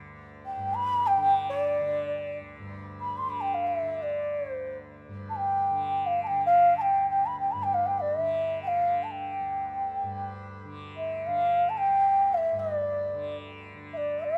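A mellow, airy bansuri carries the melody from 0.5 seconds, sitting up front with a soft attack, vibrato and a slightly unsteady tone as it traces raga Bageshri in D. Beneath it, a quiet, buzzing tanpura drone shimmers from the very start, giving this free-time Hindustani classical passage a solemn, longing mood. Light reverb and studio ambience surround this rough home-demo recording, which is cut from a longer piece.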